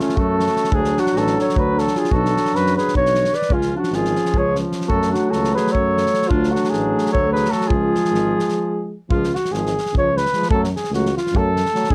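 Balkan brass band folk in a brisk 7/8 at 301 BPM counted in eighths, restless and bittersweet in C# phrygian dominant, cut from a longer piece. A mellow, punchy flugelhorn leads up front over a soft-attack clarinet second line that drops out at 8.9 seconds, while a bright, roomy trombone plays alongside a dark euphonium with vibrato that sits in the background. A tuba with light vibrato enters at 0.2 seconds as the bass, and a loose acoustic kit of tight kick and medium-tuned snare drives through a short break at 8.5 seconds, all captured closely with little reverb.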